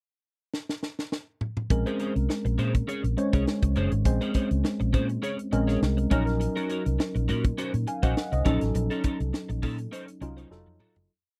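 A crisp sixteenth-note groove at 102 BPM with a light swing drives this short, slick and urban piece of polished 1980s jazz-funk pop in Bb minor, as a tight, up-front funk kit with a high-tuned snare plays a fill from 0.5 seconds before the full band enters at 1.7 seconds. A dark, foam-muted fingered bass carries an agile syncopated line with slides. A worn, slightly out-of-tune tine electric piano through analog chorus pushes drop2 chords and short fills over Bbm9, Ebm7/Bb and F7b9b13, while a compressed, picked guitar at the edge of break-up adds a chorused sixteenth-note riff. The dry, close studio sound fades out from 8.8 seconds under a closing drum fill.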